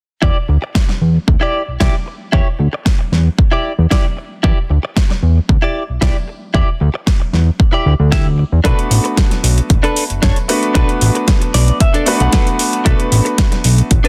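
Sleek and sensual, this nu-disco excerpt rides a straight 4/4 feel. A fat, saturated analog bass sits up front with a thick, wave-folded tone and a plucky filter attack, joined by a punchy, overdriven electronic kick. A layered pop drum kit adds a fat snare and metallic hats from 0.8 seconds. A clean, direct-recorded electric guitar carries the riff through analog chorus and tape echo, slipping in a brief fill at 11.3 seconds. A bright, brilliant grand piano enters at 8.6 seconds as the harmony moves from Em7 to Bm7, its accompaniment pumping under sidechain compression and trailed by tape echo. The mix is dry, dense and heavily limited, with a polished modern punch.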